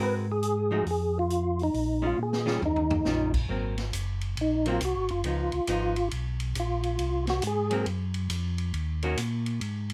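A clear, warm, percussive tonewheel organ leads this greasy, bluesy soul jazz organ trio excerpt in swung 4/4, its lightly overdriven melody carrying key click, chorus vibrato and a slow rotary speaker wrapped in plate reverb. A round, mellow organ bass with its own gentle grit and slow rotation holds the low end, while a clean, picked hollow-body archtop guitar adds dark accompaniment up front. The natural-sounding drum kit, with its punchy kick and medium-tuned snare, enters at 0.4 seconds and plays a fill at 2.2 seconds before an organ solo opens the next section at 3.5 seconds.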